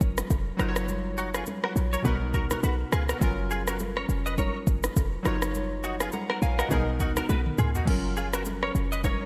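A swung afrobeats groove at 103 BPM in 4/4 drives this joyful, romantic cut from a longer piece in F# major, with an electronic afro-pop kit (deep kick, rim click, shaker, crash and toms under gated reverb) and a punchy, tight 808-style bass sitting up front, while ringing bongos and congas stay close yet in the background. Detuned, wave-folded analog keys with chorus and a filter sweep carry the F#maj7, D#m7/F# and Bmaj7 changes, and from 0.6 seconds a bright, twangy, direct-recorded clean electric guitar picks a compressed, scooped riff through ensemble chorus and delay. A drum fill at 7.3 seconds leads back to F#maj7, all framed by light reverb and a bright 1980s-style digital production.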